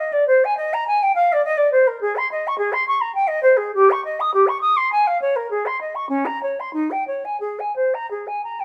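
The rhythm moves in a rubato 3/4, with the pulse drifting between 85 and 107 BPM so the phrases breathe freely. This is a brief cut from a longer baroque-style classical fantasia for unaccompanied flute, in Ab major and tuned to A4 = 439 Hz, and its mood is flowing and serene. A mellow silver concert flute plays alone throughout the 8.6 seconds, ranging from Db4 up to Eb6. Its straight, pure tone and crisp attack give each note a clean, metallic clarity, and the playing is expressive. The flute sits up front, set in a moderate stone room reverb that lends a soft halo to the sound.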